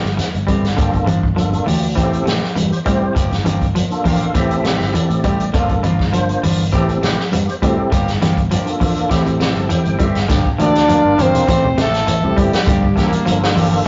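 A straight 4/4 afrobeat groove at 101 BPM in G dorian drives this defiant excerpt, with an up-front vintage drum kit, punchy fingered bass, very quiet congas and grainy shekere under two twangy, slightly broken-up electric guitars, one picking bright arpeggios through spring reverb and the other playing stabs, while a fat, lightly overdriven tonewheel organ with slow rotary and key click comps and fills over Am7 and Gm7 until a dark, scooped trombone melody and a raspy, growling trumpet enter at 10.6 s, joined briefly by a clear trombone section at 13.0 s, all in a rough rehearsal-room sound with tube saturation and stone room reverb.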